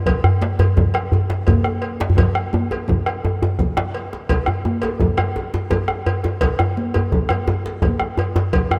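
A deep, saturated bombo, ringing high-tuned congas, a metallic, band-limited cowbell and a tight, cracking djembe start together with a second, medium-tuned djembe played with soft hands up front, setting a festive, earthy West African traditional drum ensemble at 113 BPM in 12/8, with a drum fill from 2.2 to 4.3 seconds before the second section, all heard in a lush hall reverb on a rough home-demo mix cut from a longer piece.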